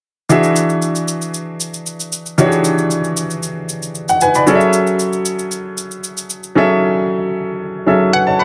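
A clear, intimate baby grand piano carries this soulful, relaxed amapiano excerpt from 0.3 seconds, with its action noise audible and short sustain, moving from E7 to F#m9. An electronic shaker, re-recorded in a small room, sits lower in the mix until 6.5 seconds. At 8.1 seconds a hollow, bouncy square-wave pluck, detuned and ring-modulated with chorus and digital delay, states a single bright note over light reverb and digital ambience.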